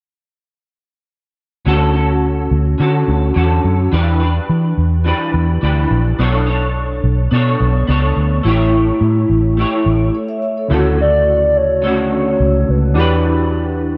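Nostalgic and laid-back, this indie and bedroom pop excerpt at 106 BPM in D major sets a bright, slightly broken-up electric guitar with chorus and vibrato over a dark, round, foam-muted bass from 1.7 seconds, pauses briefly as a mellow vibraphone rings through lush chorus at 10.1 seconds, then brings in a hollow, woody synth lead with tape echo and background analog keys with cassette-tape color at 10.7 seconds, all in a dark, lightly reverberant mix over chords moving from Dmaj7 through Em7, Bm9 and A7.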